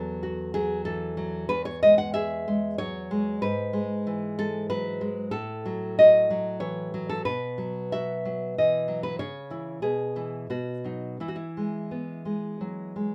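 A romantic piece for solo classical guitar, this excerpt moves in 3/4 at about 93 BPM in E major, its beats uneven and stretched with rubato. The mood is warm and sunny, carried entirely by a single fingerpicked nylon-string guitar that sits up front, its tone dark and acoustic across a range from E2 to F#5. The harmony opens on a suspended E chord, settles onto E, and passes through E/G#, F#m7/A and a bare B5 before reaching C#m. From there it turns through E/B and B to come home on E at 11.2 seconds. A moderate studio reverb adds a short sense of space around the instrument across the full 13.1 seconds.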